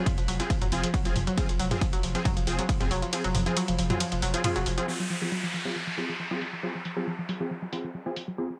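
This hypnotic, intense slice of driving peak-time techno, cut from a longer piece, opens at once with aggressive, detuned sawtooth rave stabs, chorused and pumping against the beat through delay and their own reverb. Beneath them sits a very quiet, eerie FM drone, metallic and inharmonic with phaser colour and a slow attack. Almost immediately a warbling, lo-fi sawtooth pluck takes up a riff around F3, with a dusty noise layer, chorus, delay and sidechain pumping. At 137 BPM in a straight 4/4 feel in F phrygian over an F minor chord, an overdriven, layered electronic kick punches up front until 2.8 seconds, while a punchy analog drum machine, re-recorded in a small room, adds filtered crash, hi-hat, ride and toms that pump with the sidechain. A thick, saturated sine sub bass holds a low F under the first half, and at 4.9 seconds the drone and bass give way to an up-front downlifter while filter sweeps move through the stabs and arpeggiated synth, all set in a light digital ambience.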